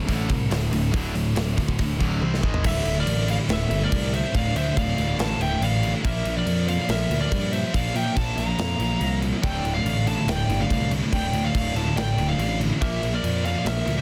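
Heavy and relentless, this heavy metal excerpt drives at 142 BPM in a straight 4/4 in D minor, cut from a longer piece. Three bright, distorted rhythm guitars sit in the background playing high-gain riffs, one of them scooped and double-tracked, while a fuzzy, overdriven picked bass sits up front with the big acoustic drum kit, whose punchy kick carries soft clipping under bright cymbals and a medium-tuned snare. A drum fill at 2.2 seconds leads into a half-time feel at 2.6 seconds, where the riffing settles onto D minor and Bb harmony. At 2.7 seconds a smooth, overdriven lead guitar takes the melody high above the riffs, joined by a quieter, nasal second line from a lead guitar with a parked wah and delay. One of the rhythm guitars drops out after the opening and returns at 9.4 seconds, as the riff shifts back to D power chords. The sound is dense and heavily limited, with a small room ambience around the band.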